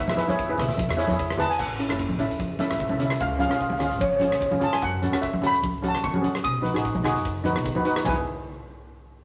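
Set in a wet small room with a short reverb, this bouncy, carefree calypso clip in E major at 148 BPM features a shimmering lead steel pan played with medium rubber sticks carrying the melody, an up-front, airy double-seconds pan struck with hard rubber sticks for accompaniment, a thumpy, woody pizzicato upright bass on gut strings, a huge arena drum kit with a hall sound, a punchy kick, crash, hi-hat, rim click and toms, and damped, compressed, saturated congas with thick skins, all moving through E, A, C#, F#m and B before returning to E at 8.1 seconds.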